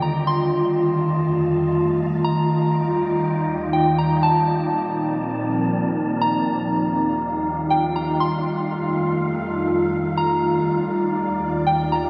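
Blissful and dreamy, this half-time hip hop excerpt at 121 BPM in Eb lydian floats an up-front, detuned pad of sustained chords moving through F7, Ebmaj9 and Bbmaj9 beneath a soft, pure FM bell melody high in the register, while a dark, breathy wind-like noise layer hovers throughout, a barely audible fingerpicked harp rings only in the first 1.2 seconds, and a cathedral reverb with a 6.3-second tail soaks the whole mix.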